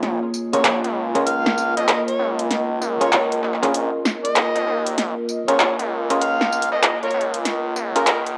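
Funky and gritty, this glitch hop excerpt swings its 16ths in 4/4 and rides a single Bbm7 chord through a build-up lasting its full 8.4 seconds. A drum and bass kit sits up front with a cracking snare, bright hats, handclaps and tambourine, all pushed through overdrive. Beneath it, an aggressive, nasal synth bass with sawtooth and oscillator-sync bite is saturated and trimmed by a high-pass filter. A warbling, nostalgic pad holds sustained chords with slow attack and long release, its chorus and cassette wobble sweeping under a filter across the whole passage. From 0.5 seconds an amplified, overdriven harmonica takes the solo in a jazz style with tongue slaps and scooped notes, while a muted, stringy clav through a combo amp adds percussive stabs, both roughened by 12-bit sampler grit, tape and analog delay. The whole thing has the feel of a home cassette recording, bathed in moderate spring reverb.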